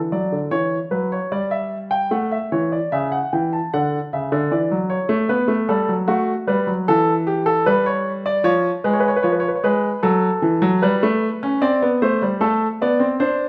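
A grand piano sits up front in a moderate recital-hall reverb, its tone warm and natural. This is a short classical passage in the baroque style, written as a two-part invention for solo piano and cut from a longer work. The mood is stately and elegant, with a straight, even feel in four. The piano plays alone for the full 13.5 seconds, ranging from C#3 up to A5. The harmony moves through a chain of mostly minor chords, passing through Em, A and D, then a C#7 over E# before settling on F#m and ending on Am.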